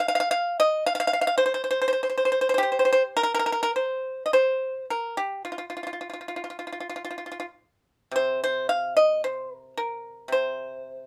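A light reverb frames this elegant, contemplative fragment of Chinese traditional music, cut from a longer piece, where a solo acoustic pipa, played with fingerpicks and sitting dry, percussive and up front, ranges from C3 to F5 in the C yu mode at a rubato 55 BPM in 2/4, moving into a new section at 3.8 seconds and continuing to 11.1 seconds.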